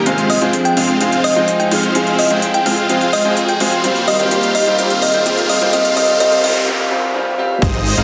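Euphoric and triumphant, this short cut from a festival progressive house track in Eb major drives at 127 BPM in a straight 4/4, moving from Fm to Eb as it builds. A huge, detuned supersaw riff sits bright and up front, its thick sawtooth layers pumping under sidechain compression with a low-pass filter and dub echo. It is supported by a lush, warbling vintage pad with chorus and a boxy baby grand piano in the background, both pumping, while a fat, detuned analog bass stays very quiet underneath. A round, tine-like FM pluck carries the melody in a high register from 0.3 to 6.6 seconds, its gentle, dark tone shaded by chorus, phaser and dub echo. The big-room drum kit brings crisp hats and crash cymbals, a riser and noise sweep push the build toward a break at 6.7 seconds, and a punchy, tape-warm kick lands at 7.6 seconds. The dense, heavily limited master has a wet digital room reverb.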